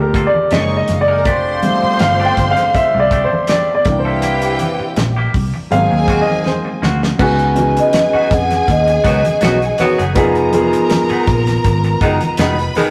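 An intimate grand piano, up front with audible action noise, leads at the start over dark, bowed strings, a round, foam-muted electric bass, a damped drum kit with a fat snare and tight kick, low-tuned congas and a clean, bright semi-hollow guitar riff. This lush, smooth and romantic 1970s-style soul has a lightly swung feel, and mellow horn stabs with octave doubling join at 1.3 seconds. After a drum fill, a ringing vibraphone with soft mallets and fast motor vibrato carries the melody from 7.2 to 9.8 seconds, all within a stone-room reverb and the warm saturation of a rough rehearsal-room recording.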